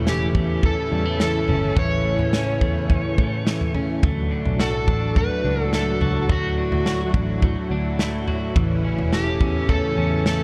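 A loose indie drum kit with a tight kick, medium-tuned snare and toms sets a straight 4/4 pulse at 106 BPM beneath a dark, round, foam-muted picked bass in this blissful, ethereal dream pop passage in D major, moving from A to D at 4.0 s and back to A at 8.6 s. A slightly broken-up, compressed electric guitar plays arpeggios through subtle chorus, tape echo and shimmer reverb, while a vintage string machine's violas hold soft-attack, warbling sawtooth chords with ensemble chorus and shimmer reverb. Above them an overdriven slide guitar carries the melody with tape echo and shimmer reverb, within a light small-room ambience.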